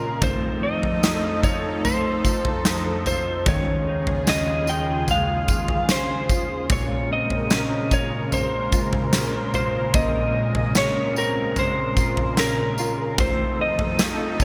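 A slightly broken-up electric slide guitar carries the melody up front through subtle chorus and delay in this hazy, haunting dream pop excerpt, over two dark, clean, fingered electric guitars in the background (one with tremolo, the other playing arpeggios through ensemble chorus and delay), a thick, detuned sawtooth pad holding slow-attack chords through chorus and phaser, and a huge arena drum kit with punchy kick, snare, toms and tambourine that enters at 0.2 seconds, all set in a lush hall reverb with bright 1980s-style digital production.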